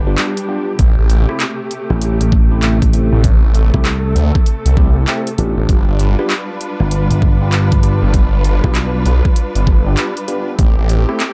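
Muted, veiled strings sustain lush chords over a thick, swirling detuned saw bass with a phaser and tube saturation from the start of this gritty, funky glitch hop cut at 98 BPM in A minor, moving between G7 and Am7 with a swung 16th feel. Barky overdriven electric piano stabs arrive through phaser, sidechain pumping and dub echo, while an overdriven drum kit with bright hats, handclaps and rim clicks is joined at 0.8 seconds by a knocking, up-front electronic kick. A growly, punchy slap bass with an envelope filter plays from 1.9 to 9.0 seconds in a dark, dry mix.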